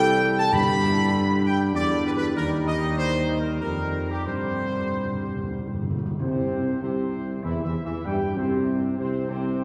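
In a steady triple metre at 97 BPM with a straight feel, this solemn, triumphant classical brass passage, cut from a longer piece, moves through C, G, E-flat and G suspended chords before settling back on C at 6.2 seconds. A warm trumpet section carries the melody up front with light vibrato and a soft attack, ranging from G4 to B5. Beneath it, a mellow French horn section and a bright, tight trombone section hold sustained chords, while a dark solo tuba with a smooth top anchors the bass in the low register. Timpani played with hard mallets on calf heads sit in the background, sounding briefly near the start and then playing a fill from 4.3 to 6.2 seconds. The whole ensemble is heard from further back in a wet church acoustic with a long, three-second reverb tail, lending the brass a grand, ceremonial glow.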